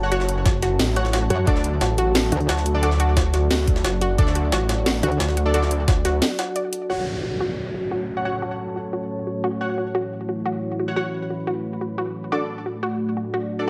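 An overdriven, knocking electronic kick drives this aggressive, futuristic slice of dark technical drum and bass in F# minor at 177 BPM, cut from a longer piece. Around it, an up-front drum and bass kit with a cracking snare and bright hats is layered with a gritty, pitched-up, tape-toned jungle sampler kit. A thick, detuned saw bass carries the low end, joined by short bursts of a metallic, wobbling FM bass. Above them, a bold, punchy orchestra-hit-style synth stab, a round analog pluck playing arpeggios and a deep, moody ambient pad in the background run throughout, the pad and pluck pumping against the sidechain. The bass drops out at 6.2 s for a brief break, and from 6.9 s a downlifter falls away while filter sweeps move over the arpeggio and pad, with a dark, sub-octave analog pad entering on sustained chords at 7.7 s. The harmony shifts between F# minor and D, set in a moderate digital room reverb.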